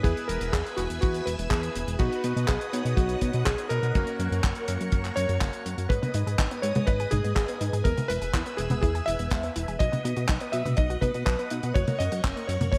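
Italo disco with a melodramatic, danceable mood, where a warm electric grand piano carries the melody through tape echo over lush, phased string-machine chords, a glossy, nasal chorused synth bass with tube saturation, a dry, tight kick up front and a damped 70s kit of handclaps, hi-hat and toms in gated reverb, while a clear electric grand piano plays filtered stabs until 5.9 seconds, when a round, detuned analog pluck takes up chorused, delayed arpeggios, all under light studio ambience and vinyl crackle in this excerpt.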